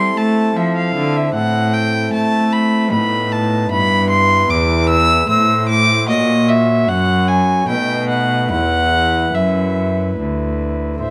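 A grave, introspective baroque-style sonata movement in E minor at a stately 75 BPM in 3/4, with a warm, reedy period-style violin singing the melody up front with light vibrato over a rich, bowed cello bass line, both in gut-string tone, while a smooth principal-stop pipe organ with a touch of chiff fills in the continuo harmony, all three sounding throughout this short passage cut from a longer piece and set in a moderate recital-hall reverb.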